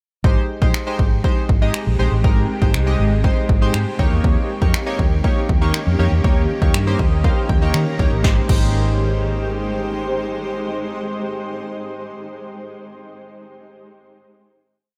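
Euphoric and upbeat, this dance-pop piece sets punchy, up-front deep house drums and a round, foam-muted fingered electric bass with chromatic approach notes under glossy, chorused retro synth keys playing syncopated chords, while a cloudy granular pad joins at 1.2 s, with keys, pad and bass all pumping from sidechain, the keys adding a fill at 6.7 s before the drums stop at 8.6 s and the piece rests on a final sustained chord.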